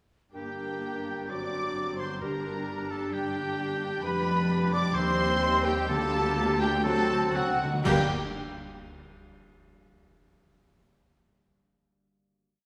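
A lush orchestral sound in a wet reverb opens this short, stormy classical piece in G minor, a fast romantic movement in 4/4 at about 115-133 BPM, with a rubato feel that slows from 3.1 s. Smooth, focused violins carry the tune with vibrato. Hollow, airy flutes double it in unison, a second violin section doubles it at the octave, and a bright oboe doubles it both in unison and at the octave. Meanwhile a very quiet, intense viola tremolo, a dark bassoon, a distant clarinet and a dark horn section hold sustained chords over ringing harp broken chords and a bowed bass line of expressive cellos and double basses. Round timpani strokes mark the bass from 2.2 s, bright cymbal swells, crashes and bass drum strokes join at 4.0 s, and a timpani fill leads into a full-band accent on the final G minor chord at 7.9 s.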